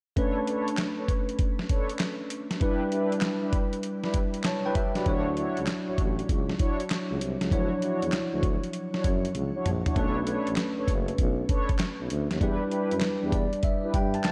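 Bouncy and upbeat, this dark new jack swing R&B groove at 98 BPM swings its 16ths as a gritty, compressed, up-front sampler-style drum kit with a thumpy kick, handclaps and a medium-tuned snare drives clean tine electric piano chords through lush chorus and shimmer reverb, while round, detuned synth brass stabs with a filter sweep and tape echo, a distant, roomy tuba with light vibrato and scooped notes enters on bass at 5.1 seconds, and a drum fill at 9.3 seconds leads to a new section that closes on an electric piano fill at 13.0 seconds, all in a lush hall reverb.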